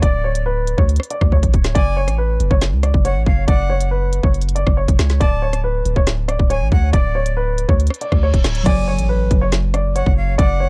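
A dark, dry, close-sounding cut from a longer drill track in F# minor at 139 BPM with a half-time feel, where a mellow grand piano with audible action noise carries a tense melody through delay, a breathy, chiffy jazz flute adds a second line above it, a deep sine 808 bass and an up-front electronic kit with hard-clipped kick, woody snare and crisp hats drive underneath with a fill at 1.3 seconds, and a very quiet reverse cymbal rises into an impact at 8.7 seconds as a thumb-plucked, ringing concert harp enters in the background.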